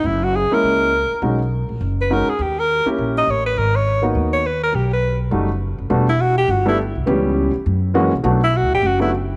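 A clear, close-miked alto saxophone carries the melody up front with vibrato and a punchy jazz attack in this moody, late-night excerpt of small-group swing and bop. Pizzicato upright bass with a woody, steel-string tone sits alongside, while a warm concert grand piano accompanies from 0.5 seconds with deep bass and audible action noise that gives it an intimate, natural feel. A break lands at 5.6 seconds before the harmony settles into E minor for the second section, all set in a moderate plate reverb.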